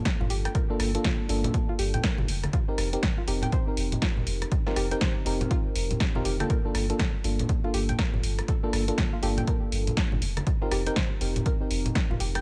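A digital ambience surrounds this late-night deep house excerpt at 121 BPM in G minor, where a mellow, dark FM electric piano plays chorused, tape-echoed stabs over Gm9 and F9sus4 chords, a punchy electronic kick sits up front with an analog drum machine's hi-hat, rim click and snare, a deep sine sub bass pumps under the kick, bright compressed congas play softly in the background, and a gentle, rounded pluck traces arpeggios with a filter sweep.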